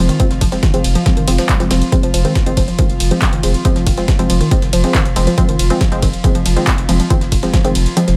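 Dark and hypnotic, this driving peak-time techno excerpt in F minor at 139 BPM rests on an up-front punchy kick that drops out at 8.0 seconds, a thick saturated sub bass, muted filtered dub chord stabs with dub echo, a woody wave-folded pluck riff in the background with tape echo, an eerie metallic inharmonic drone, a tape-warm analog drum machine of handclaps, hi-hat and ride cymbal, and a very quiet gritty breakbeat sampler-style kit of hi-hat and snare, with sidechain pumping on most parts under light digital ambience.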